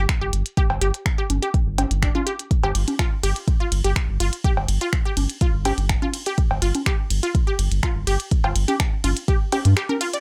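A straight, steady 4/4 groove drives this clinical, quirky minimal techno excerpt, cut from a longer piece, with a deep electronic kick sitting up front from the start. A round analog bass, dark and slightly nasal with a sine-like body and tube saturation, holds down the low end and pumps through sidechain compression. Above it, a sparse click kit of finger snaps, clicky hi-hats and ride cymbal ticks along at a lower level. A squelchy, resonant blip pluck, detuned and bright with a noise layer, carries the riff through chorus, dub echo and its own sidechain pumping. Cowbell and bongos arrive at 0.7 seconds, overdriven and fed through delay. The dry, close mix ends on a short break at 9.8 seconds.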